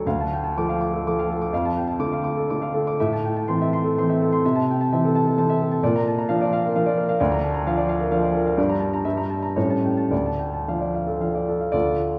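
In a rubato 3/4 that drifts between 107 and 134 BPM, this hopeful romantic character piece for solo baby grand piano unfolds in D minor, tuned to A4 = 436 Hz, as a short fragment cut from a longer work. The piano's warm, open tone with long sustain spans D2 to D6 and sits up front, while a wet recital-hall reverb of 1.5 seconds places the listener further back in the room. Its single section moves from Dm through Am and Bb to Gm, then passes through Edim/G and A7 before resolving home to Dm at 10.1 seconds.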